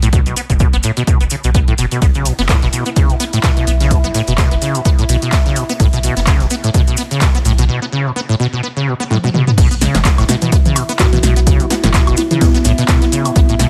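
Acid house with a trippy, raw mood, cut from a longer piece and riding a swung 4/4 groove. An up-front, squelchy sawtooth acid bass carries the resonant riff through ensemble chorus and dub echo, while a deep, round sine sub bass pumps beneath it and a punchy, tape-warm electronic kick sits up front. A punchy analog drum machine fills in congas, handclaps, hi-hat, snare, toms, woodblock and crash, with a short room on the snare, clap and hats, and grainy maracas sit in the background. From 2.0 seconds a very quiet soft-mallet kit enters, heard in a natural hall, and at 2.3 seconds a warbling, nostalgic lo-fi pad of detuned square and triangle tones joins to sustain chords under chorus, built-in reverb and sidechain pumping. After a break and a drum fill, the drop arrives at 9.6 seconds, and a woody, hollow kalimba enters at 11.0 seconds with a dry, close-miked melody trailed by delay.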